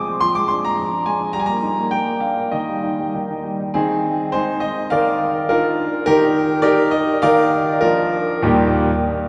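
A graceful, elegant classical-period piano sonatina in Eb major, in 2/4 at roughly 94-106 BPM with a rubato feel, is played by a solo grand piano with an open, up-front tone spanning Eb2 to D6; the piano is bathed in the long, wet reverb of a church or concert hall, and the brief passage moves into a second section at 3.7 s before coming to rest on an Eb chord at 8.4 s.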